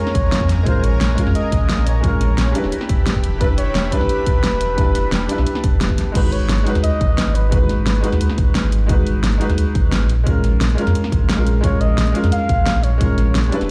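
Liquid drum and bass at 175 BPM, melancholic and lush, in a short cut from a longer piece where a mellow, jazz-style flugelhorn with vibrato and delay carries the melody, dropping out at 8.4 seconds and returning at 11.6 seconds over a soft, felt-muted upright piano whose action noise and tape echo give it an intimate feel. A thick, detuned sawtooth unison pad with chorus and sidechain pumping sits in the background until 6.1 seconds, while a deep, round sine sub bass anchors the chords moving from A#m7 through Em7 and G#m7. A punchy electronic kick and a layered pop kit with a fat snare, crash and hi-hat drive the track, all heard in a large studio reverb as if played on a big sound system in a bare room.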